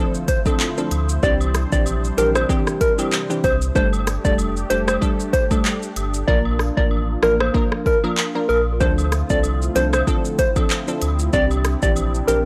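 A swung 95 BPM groove in 4/4 drives this hypnotic, bouncy dancehall excerpt in D minor. The produced afro-pop kit sits up front with a deep kick, crisp hats, handclaps, rim clicks and shaker, while a cabasa and woodblock layer sounds distant and roomy in the background. The hi-hats drop out between 6.3 and 8.8 seconds. A full sub bass with an octave, built from sine and triangle tones, enters at 0.9 seconds, just as a barely audible electronic impact sounds. A glassy, crystalline wavetable pluck with a noise layer and filter sweep carries the accompaniment over a smooth, detuned sawtooth pad that pumps with sidechain beneath chords moving from Dm7 through Cadd9, Gsus2 and Bb. On top, a round, keys-like FM lead with a warbling vintage tremolo and analog delay plays the melody, and the whole mix is dry and gritty with transformer saturation.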